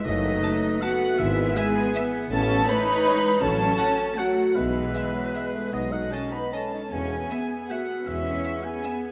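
Wet scoring-stage reverb surrounds this festive, sweeping classical excerpt in E major, a rubato 3/4 moving between 146 and 175 BPM through chords that settle from B7/F# onto E at 6.9 s. Soft-attack, sul tasto violins carry a floating melody from 0.4 s, while a second violin section joins an airy, bright silver flute, a distant oboe and a smooth clarinet on the upper line, and mellow French horns hold sustained chords. Beneath, a dark bassoon and lush, woody violas fill the accompaniment as cellos, pure-toned double basses and a punchy tuba anchor the bass, the tuba and basses stopping at 8.4 s.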